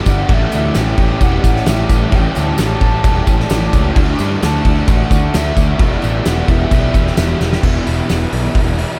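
Hazy and brooding, this 9-second shoegaze and dream pop excerpt in E minor moves at 131 BPM in a straight 4/4, with a loose, roomy indie drum kit and a fuzzed, overdriven picked bass up front beneath three overdriven guitar riffs (one crunchy with analog chorus, one dark with reverse reverb, one bright, double-tracked and very quiet), a soft, round sine lead melody with chorus, delay and vibrato that ends at 7.4 s, and a jingly tambourine, all soaked in a huge ambient reverb as the chords pass from A7 through D and Em7 to Em after a drum fill at 7.4 s.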